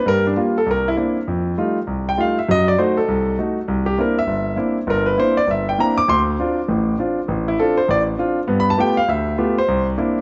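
A concert grand piano opens the recording alone and carries it for the full 10.2 seconds, in a swinging, playful jazz passage cut from a longer piece. The tempo is a brisk 200 BPM in 4/4, with a light swing on the eighth notes in C mixolydian. The piano spans from deep bass up into its upper register, and its tone is intimate, natural and up front, with long sustain and the audible clatter of the action close at hand. The harmony moves quickly through rich chords such as Gm7, C9, F9 and F#dim7, then settles onto Dm7 and G9 before landing back on C9. A moderate echo chamber reverb gives the piano a lingering tail, and the overall production is dark and mellow, with the highest treble gently shaved away.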